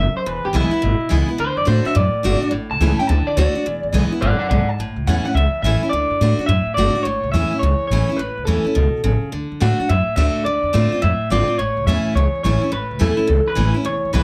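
Rollicking and retro, this short rockabilly cut from a longer piece swings in four. The electric guitar carries the melody through a small old amp, its twangy, slightly broken-up tone bright against a tape echo, and it opens with a clean solo that runs until 4.8 seconds. A picked steel-string dreadnought acoustic guitar plays full-bodied accompaniment underneath. A woody, thumpy upright bass with gut strings is plucked pizzicato and sits a little more prominently than the guitars. All three parts play throughout, close and up front in a light reverb. The harmony moves among major chords before briefly darkening to a minor-seventh chord at 10.5 seconds, then settling back home.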